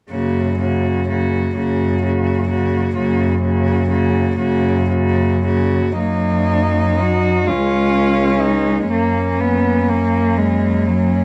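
A rich, focused cello with vibrato carries the melody up front in this tender, lyrical classical fragment for cello ensemble in F# major, moving in a rubato 6/8 at 35-44 BPM, while a second cello adds an intimate, airy sul tasto line, a distant, smooth cello supplies the accompaniment and a warm cello with light vibrato holds the bass, all under light reverb and the worn, warbly pitch drift of old cassette tape as the harmony shifts from F# to C# at 7.5 s and back to F# at 8.9 s.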